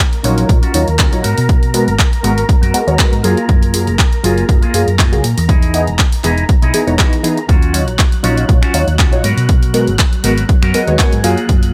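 A dry, overdriven analog drum machine opens this sensual, groovy excerpt of filtered disco house with finger snaps, handclaps and hi-hat played with a light swing, and a punchy, up-front electronic kick soon joins it. A round, hollow-body fingered bass, a nasal, detuned polysynth comp with chorus and phaser, a dark envelope-filtered guitar riff and a lush vintage string machine sitting in the background all pump against the kick under a low-pass filter sweep lasting the whole clip. Minor-ninth and major-seventh chords cycle through, and a clean electric guitar fill appears from 10.5 to 11.5 seconds.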